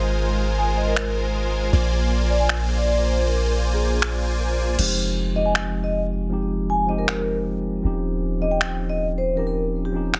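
A dense, heavily limited modern mix with light reverb frames this dreamy, emotional half-time future bass excerpt, where a thumb-plucked Celtic harp with vintage 12-bit sampler grit and dub echo rings in the background beside huge, detuned supersaw chords under a low-pass filter that stop at 4.8 seconds, while a deep sine 808-style bass sits up front, a soft-mallet vibraphone carries the metallic melody through delay from 0.6 seconds, a layered electronic pop kit adds crash, finger snaps and a soft-clipped snare, and a clean tine electric piano enters as accompaniment at 4.8 seconds.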